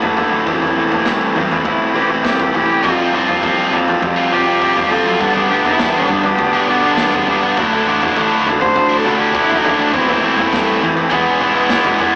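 A cranked stack guitar sits up front, its bright, overdriven picked riff carrying spring reverb across this brooding, angsty fragment of quiet-loud alternative rock in a straight 4/4. A very quiet fingerpicked steel-string acoustic guitar plays arpeggios at the start, handing over at 2.8 s to a heavy high-gain guitar whose distorted riff thickens the texture to the end. Underneath, a fuzz-soaked picked electric bass rumbles in the background, and a raw garage drum kit drives kick, snare and toms with a pumping, gritty room sound and a rolled-off top. From 1.4 s a rich bowed cello carries the melody with vibrato and a smooth, focused tone, set back in the mix. The harmony moves from Am/E through Fsus2, G and Dsus2 before returning to Am/E and landing on E, all captured in a rough rehearsal-room recording with tube saturation and a small-speaker character.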